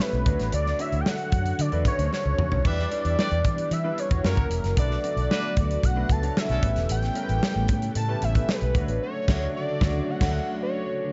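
Urban and bittersweet, this short excerpt of polished 1980s jazz-funk pop moves at 113 BPM in a straight 4/4, with a fat, detuned sawtooth analog lead carrying the melody over clear grand piano accompaniment with analog chorus and a lush string machine that sits in the background, moving from Dmaj7 through Em7, F#7, Bm7 and A9 back to Dmaj7. A punchy, up-front studio drum kit with bright cymbals and a round, foam-muted fingered bass drive the groove, and a drum fill at 2.1 seconds ushers in a clear horn section with light vibrato that plays a second line until 6.7 seconds. A band accent closes the passage from 9.0 seconds, all within a dark production with light reverb and studio ambience.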